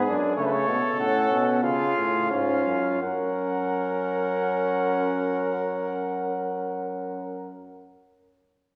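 Contemplative and solemn, this brief fragment of an imitative classical brass canzona in 4/4 sets a mellow cornet melody over a dark trumpet second line with light vibrato and a smooth top, while an up-front, roomy trombone adds warm accompaniment and a euphonium with its own light vibrato anchors the bass, the ensemble easing back in pace over the first 3 seconds and moving from F#m through C# to arrive on F# at 3.0 s inside a wet recital-hall reverb with a 1.9-second decay.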